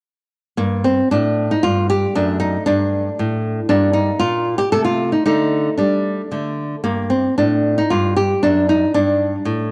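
In a rubato 3/4 at 115 BPM, this grave, solemn fragment of a baroque-style classical dance in G minor, tuned to A4 = 442 Hz, features a solo fingerpicked nylon-string guitar, bright and up front with a cassette-tape hue and light small-room reverb, playing from 0.6 to 9.7 seconds through Gm11, D/F#, F7/C and Dsus4 before returning to Gm11 and D/F#.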